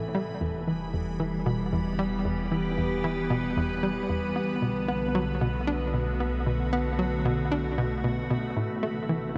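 A hollow, bouncy square-wave pluck riff with chorus and analog delay sits up front beside an evolving, detuned wavetable pad holding sustained chords, while a round sine sub bass and, in the background, a resonant, bubbling sawtooth texture stepping through random filter moves fill out this expansive, mysterious stretch of sequencer-driven space music, all set in a vast cathedral reverb as the harmony moves from Em to Bm7 at 4.4 seconds and Am at 8.6 seconds.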